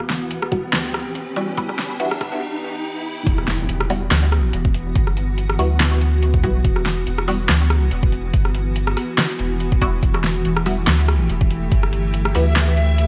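Lightly reverberant and high-pass filtered, this heavy, dark deep dubstep excerpt in E minor moves at 142 BPM with a swung, half-time feel. A riser and filter sweeps on the cloudy granular pad and the nasal, detuned dub chord stab (treated with phaser, analog chorus and dub echo) build until an impact marks the drop at 3.3 seconds. From there the Em chord shifts to Emadd9 over a round, soft sub bass, a deep up-front electronic kick, and a tape-warm deep house kit of fat snare, metallic hi-hats, handclaps and rim clicks, before a reversed, dreamy swelling texture rises in at 10.0 seconds.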